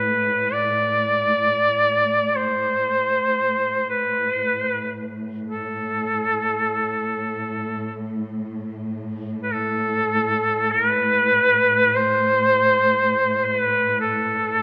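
A moderate concert hall reverb, about 2.4 seconds long, surrounds this short, solemn fragment cut from a longer Caucasian folk lament in A minor, played in free time. A clear duduk sits up front as the solo voice, singing a mournful melody between A4 and D5 with vibrato and scooped notes that give it a vintage, folk-style character. Beneath it, a lush symphonic cello section holds a bowed drone on A2, its soft attack and expressive vibrato lending a rich ensemble depth. The cellos sit well behind the duduk in level. Both parts sound together from 0.0 to 14.6 s, giving the passage a grave, solemn weight.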